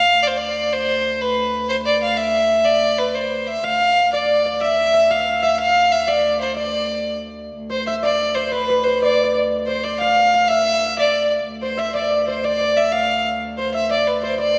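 Mysterious and driving, this short medieval piece is cut from a longer work and moves in 6/8 with a straight feel. A single clear fiddle carries the melody up front, bowed with light vibrato and an intense edge. A fingerpicked concert harp plays a ringing second line in the same register, sounding briefly at the start before dropping out and returning at 3.6 s for the rest of the piece. Far beneath them, one fretted viola da gamba holds a low bowed drone in period style, its gut-string tone rich and reedy with light vibrato, sitting distant and quiet in the mix. The music shifts into a new section at 7.5 s, and the whole is heard from further back in a wet, reverberant scoring stage with a softened top end.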